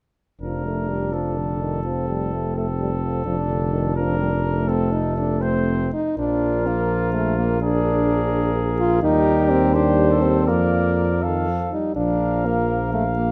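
A moderate scoring-stage reverb gives this classical brass quintet passage, cut from a longer piece, a resonant, open sound. In 6/8 with a rubato feel, the trumpet takes a second line that sounds distant and roomy, while the French horn stays clear and present in the accompaniment. The euphonium sits in the background, and the bass trombone holds the bass, punchy and up front. The mood is triumphant and warm. At 6.2 s the cornet enters with the melody, colored by a light vibrato, and carries the tune to the close at 13.3 s.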